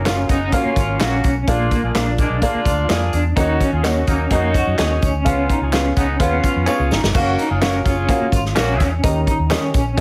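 Joyful and warm, this short cut of uptempo 1960s-style soul rides a straight 4/4 groove from a punchy, up-front acoustic drum kit, a round, foam-muted fingered bass, and a woody, slightly detuned upright piano with audible action noise, while group handclaps, maracas and tambourine sit in the background. Two lo-fi guitars through a small old amp share the midrange, one playing a dark tremolo riff set back in the mix and the other picked stabs treated with lush chorus. A mellow horn section with light vibrato and soft attack carries a jazz-style second line until 8.9 seconds, and a drum fill at 6.7 seconds leads into a new section, all pressed into a heavily compressed radio sound with moderate studio reverb.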